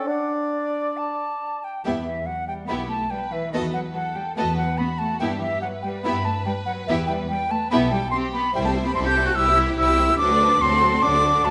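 Graceful and lively, this quick, rubato classical-period orchestral passage opens with a bright, airy flute up front alongside brief warm oboe and bassoon notes, before lush, vibrato-rich strings enter at 1.8 seconds with violas and cellos beneath the violins, double basses anchoring the bass, and a focused, close violin melody sitting in the background arriving at 2.7 seconds, all set in a wet recital-hall reverb.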